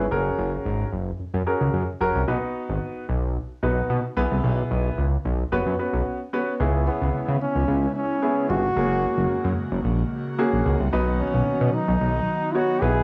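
A home cassette recording with moderate booth ambience and studio reverb carries this driving, confident pop excerpt at 111 BPM, where a polished grand piano and a fat, detuned sawtooth analog bass drive the opening, a brief break at 6.1 seconds gives way to an airy, breathy pad with chorus and phaser from 6.6 seconds, and a clear, close-miked trombone with vibrato, scooped notes and tape echo takes the solo melody from 6.9 seconds over chords moving from F#add9 to C#m7.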